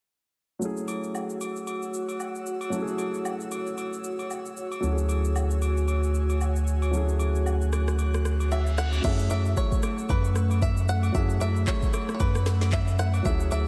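A swung, overdriven afro-pop kit drives this late-night, soulful amapiano excerpt with a deep kick, woody snare, handclaps, rim clicks, shaker and crash, while vintage, band-limited agogo bells and woodblock join at 0.9 s. A short-sustain grand piano and an airy, breathy pad with chorus and sidechain pumping carry the chords, and a thick, saturated sub bass arrives up front at 4.8 s. The kick briefly drops out at 8.0 s and a reverse cymbal sounds in the background at 8.4 s, then a bright, twangy banjo played with fingerpicks takes the melody through analog delay, the whole mix soaked in a dreamy hall reverb.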